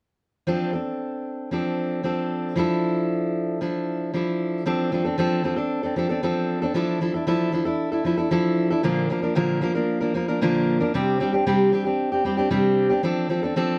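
A lone fingerpicked steel-string acoustic guitar opens at 0.5 s, its jumbo body giving a dark, full-bodied tone with the fresh strings ringing clearly, sitting up front in a moderate studio reverb. This easy-going, heartfelt pop excerpt moves at a steady straight pulse of 115 BPM, rocking between F6 and Dmadd9/F before a second passage from 4.7 s extends the progression through Bb and Csus2 and settles back on F6 near the close at 13.8 s.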